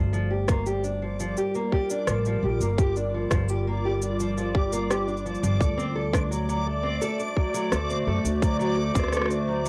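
Dry, lo-fi home-cassette sound frames this autumnal, wistful folktronica fragment in G minor at 85 BPM, where a boxy parlour steel-string guitar fingerpicks arpeggios through analog delay, a woody, thumpy pizzicato upright bass sits up front, a warbling, detuned pad holds mellow sustained chords with chorus and reverb, a tight electronic kick and an electronic shaker with rim click both carry overdrive, and from 1.1 s a reversed, granular, bright texture swells dreamily above as the harmony moves from Gm7 to D7 at 5.6 s.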